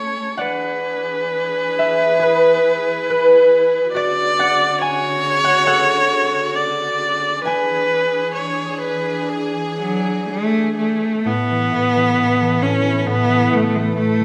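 Rubato and unhurried at 60-71 BPM in 4/4, this tender, pastoral Celtic slow air in A major opens with a ringing, fingerpicked concert harp carrying the accompaniment while an intimate, airy-bowed viola sings a second line with vibrato and the studio string section holds hushed sul tasto chords beneath, moving through E7, Dmaj7 and back to E7 before a clear, smooth cello takes the melody up front at 9.8 seconds, the viola bowing out at 10.8 seconds as the harmony settles on Aadd9 in a moderate scoring-stage reverb.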